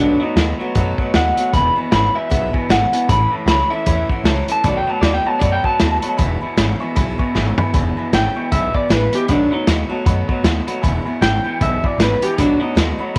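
A swung 155 BPM shuffle in 4/4 drives this rollicking, retro rockabilly excerpt in E major, with a muffled, lo-fi vintage drum kit entering at 0.4 s, its punchy kick up front, and a drum fill at 7.4 s leading into the repeat of the opening section. A woody, thumpy upright bass with transformer saturation anchors the low end, alongside a slightly broken-up electric guitar riff with spring reverb, while a bright picked steel-string acoustic guitar with fresh strings and a mellow, slightly detuned upright piano fill in the background. Out front, a twangy lead electric guitar carries the melody through tape echo until 12.8 s, over changes that cycle through E, A and B7.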